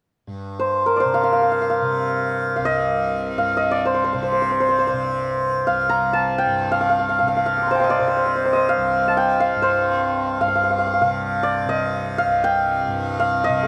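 A hammered santur rings up front from 0.6 s, its plate reverb lending a shimmering glow to a solemn, introspective melody in raga Bhimpalasi on C, ranging from A3 up to D6. Beneath it, from 0.3 s, a softly plucked tanpura sustains a bright, buzzing low drone from C2 to C3, sitting well back in the mix. The piece unfolds in free time within a modest small-room ambience and moves into a new section at 10.4 s, as a fragment cut from a longer performance.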